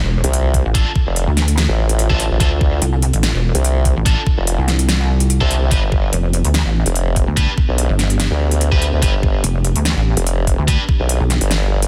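Heavy wobble dubstep at 145 BPM in a half-time 4/4 feel with a light swing on the sixteenths, this chaotic, heavy passage sits in D dorian and moves from Dm to G at 5.7 seconds. Two up-front wobble basses dominate: one pulsing and saturated, built on a mellow sine tone with chorus and overdrive, the other a wobbling sawtooth-and-sine voice pushed through a formant filter. A big-room electronic drum kit supplies a huge snare and crisp hats, joined at 0.5 seconds by a knocking, tape-warm electronic kick, both sitting in a small room. Bright, high-gain distorted guitar stabs enter at 0.7 seconds, picked and trailed by digital delay. Behind them an evolving, detuned wavetable pad morphs through sustained chords with chorus, its own reverb and sidechain pumping, while a barely audible impact marks the opening. The dense, heavily limited mix keeps reverb to a minimum overall, and the recording is cut from a longer piece.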